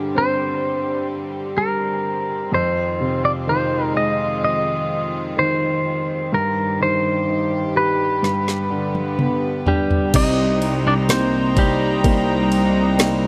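A slow, straight 4/4 pop ballad at 63 BPM in C minor, this melancholic, heartbroken excerpt sets a twangy, compressed clean electric guitar melody up front over open baby grand piano accompaniment and sustained, reedy string-section chords with a gut-string, period-style tone, as the harmony moves from Gsus4 through Fm7 and Cm/G to G. A smooth R&B drum kit with a knocking kick and woody snare enters at 8.2 seconds with a fill. At 10.1 seconds a bright, earthy bowed cello section takes the bass on a low C under a Cm7 chord, all set in light reverb.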